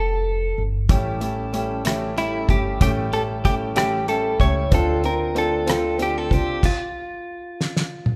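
A clean, direct-recorded electric guitar carries the melody with vibrato over woody, thumpy pizzicato upright bass, opening this melancholic, aching six-eight pop ballad in D minor at 63 BPM. From 0.9 seconds a warm grand piano, a compressed twelve-string electric guitar picking arpeggios in the background and a dry, damped 70s drum kit with a fat snare and tight kick join in, as the harmony moves from Fadd9 through A7 to Dm7 in a recital hall's moderate reverb. At 6.6 seconds the bass, piano and twelve-string stop, leaving the lead guitar and drums, whose fill closes this slice of a longer piece.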